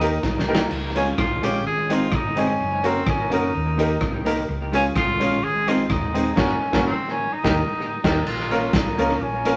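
Ska with an upbeat, joyful mood, this short excerpt features a vibrato-laden tenor saxophone carrying the melody with a distant, roomy tone, while a dark, clean hollow-body jazz guitar with tape echo provides accompaniment and a woody, polished upright piano plays short stabs. A round, punchy hollow-body electric bass anchors the low end, and a gritty, saturated garage drum kit with a rolled-off top and tape echo sits up front, opening with a drum fill at 0.2 seconds. The band hits an accent from 6.4 to 8.3 seconds before moving into a new section, with the whole set in a wet studio reverb.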